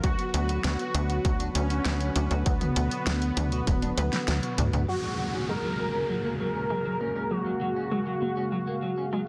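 A bold, detuned unison lead carries the melody from the start of this romantic, uplifting synthwave excerpt at 99 BPM in F# major, over a smooth analog pad whose sustained chords pump against the sidechain, a very quiet, bright pluck playing arpeggios, a slightly broken-up electric guitar riff with tape echo in the background, a nasal sawtooth sequencer bass, a punchy electronic kick and a pop kit with a fat snare, until a drum fill at 3.7 seconds leads to 4.9 seconds, where the bass and drums have dropped away, a downlifter enters and a filter sweep moves over the arpeggio.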